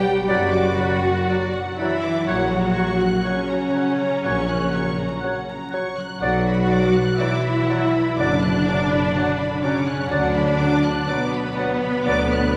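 A dark violin section opens on the melody at once, its soft-attack, vibrato line carried high with expressive portamento over a full orchestral bed of distant violas, smooth cellos, dark French horns holding sustained chords and a very quiet harp ringing out arpeggios, while a rich background violin section and an airy flute ensemble trace second lines from the start. Within the first second the rest of the orchestra fills in: a light-vibrato oboe and a vintage-toned clarinet add further second lines, a dark bassoon joins the accompaniment, a trombone section adds sustained chords and a mellow trumpet places stabs. Tuba and a woody double bass section anchor the bass beneath the cellos. This solemn, yearning classical passage moves slowly in a rubato four, cut from a longer piece, and rests on B minor harmony that shifts briefly through F#/A# before returning. Barely audible timpani with hard mallets enter at 6.2 seconds for a short, dry moment, and the whole ensemble sits in a lush, cavernous church reverb with a faint vinyl crackle.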